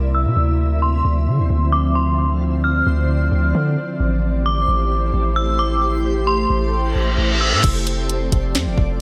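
Dreamy and blissful, this atmospheric cloud-rap excerpt moves at 132 BPM in 4/4 with a half-time feel, cut from a longer piece. An ethereal, airy pad holds sustained chords throughout, treated with ensemble chorus, reverb, sidechain pumping and a low-pass filter, while a deep, sine-toned 808-style bass sits up front with long, decaying notes. Alongside them, a reversed, swelling granular texture adds a bright, detuned layer with its own reverb and analog chorus, and a metallic, inharmonic FM bell carries the melody from 0.1 seconds, its warbling vintage ring colored by chorus, phaser, delay and a low-pass filter. The harmony moves from Dm9 to Am7 under a filter sweep, and a reverse cymbal rises at 6.9 seconds to lead into an F6 chord at 7.6 seconds, where a smooth R&B drum kit enters with a soft kick, sharp snare, tape-warm hi-hats and a crash. The production is bright and 1980s-flavored, with light digital ambience framing the dreamy haze.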